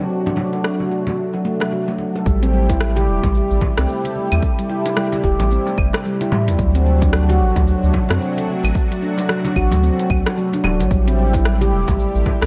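Light digital reverb and a low-pass filter give this cut from a longer organic downtempo piece a soft, rounded sheen. At 111 BPM in 4/4 with a swung sixteenth-note feel, it sits in A dorian with a meditative, warm mood, moving between D7 and Am7 chords. A smooth, detuned sawtooth pad with a soft attack and chorus holds sustained chords from the start, pumping against the sidechain, while a ringing handpan of nitrided steel, played with the fingertips, sits up front with delayed arpeggios. Bright, hard-handed congas and bongos stay in the background alongside an overdriven deep house kit of cabasa, claves, metallic hi-hat and rim click. At 2.3 seconds a round, dark bass of triangle and sine tones with a filter sweep arrives up front with sidechain pumping, together with a deep, overdriven electronic kick.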